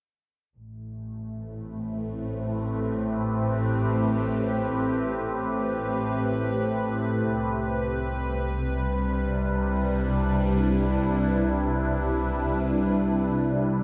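Floating in free time, this serene, reflective ambient passage, cut from a longer piece, opens at 0.6 s with a distant bowed double bass section, warm and expressive with vibrato. At 1.2 s a bright, up-front wavetable pad enters with slow-attack sustained chords, its detuned unison voices morphing through phaser and their own reverb. The harmony moves from Am9 to Cmaj9 at 7.3 s, all set in a dreamy mix soaked in a long plate reverb.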